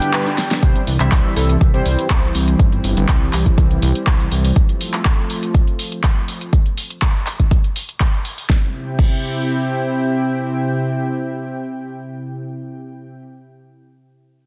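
Progressive house at 122 BPM in C major, uplifting and euphoric, this short cut from a longer piece opens with a brief, mellow octave-layered lead, a dark round pluck and glossy chorused polysynth stabs with dub echo, all over a lush, warbling unison pad with chorus that holds sustained chords until 13.1 seconds. At 0.6 seconds a fat, detuned analog bass and a tape-toned electronic kick arrive up front with sidechain pumping on the bass, joining a deep house kit whose overdriven fat snare, handclaps, hi-hat, shaker and crash play until 9.1 seconds. The chords move from C to F and back to C in a dense, heavily limited modern master with digital ambience.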